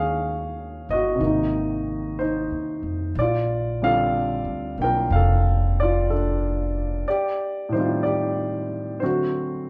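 An up-front grand piano, its action noise audible, carries the accompaniment in this romantic, intimate jazz ballad excerpt in Bb major at 61 BPM with a swung 4/4 feel, joined by a woody pizzicato upright bass until 7.0 s, when the piano plays alone through a break over Am7b5 and D7, all captured live in one room with light reverb and some lossy compression artefacts.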